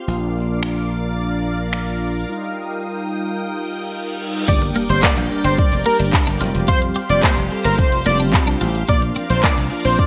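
Driving and confident, this dance-pop excerpt in G minor moves at 109 BPM over a straight 4/4, opening on a mellow, brassy synth brass part and a sweeping, airy resonant pad, both chorused and sidechain-pumping over a bright, punchy slap bass, with a layered pop drum kit of punchy kick, metallic hats, handclaps, finger snaps and shaker entering at 0.6 seconds under gated reverb. A reverse cymbal rises in the background from 3.9 seconds into the drop at 4.5 seconds, where an impact hits and a bold, retro octave-doubled lead with ring modulation, chorus and delay takes the melody, joined by a clean twelve-string electric guitar riff in the background and a grainy, very quiet tube shaker. The chords move from Bb through Ebadd9 to Gm, Fsus2 and back to Bb, all set in light reverb with a bright 1980s-style digital sheen.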